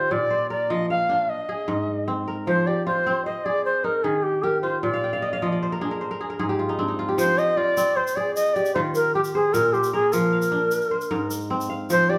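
An end-blown bamboo shakuhachi, reedy and airy with vibrato and a breathy chiff, carries the flowing, hypnotic melody up front over a crisp, ringing fingerpicked kora that spins arpeggios through a looping Bb, Ab, Fm, Eb progression at 102 BPM in a straight 12/8. This West African string music, cut from a longer piece, sits in a large, reverberant studio room where the band plays live together, and the kora breaks into a fill from 4.9 to 7.2 seconds. At 7.2 seconds a grainy tube shaker joins softly in the background as the passage repeats.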